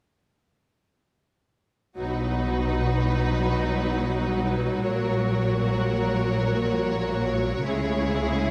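An up-front, intense viola section carries the accompaniment in this dramatic, epic cinematic passage in free time, entering together at 2.0 s with a focused, smooth-topped violin section on the second line, an expressive cello section and a woody double bass section, all bowed with vibrato as the harmony moves from B through F#/A# to C#m, captured with close, detailed microphones and light reverb in this cut from a longer piece.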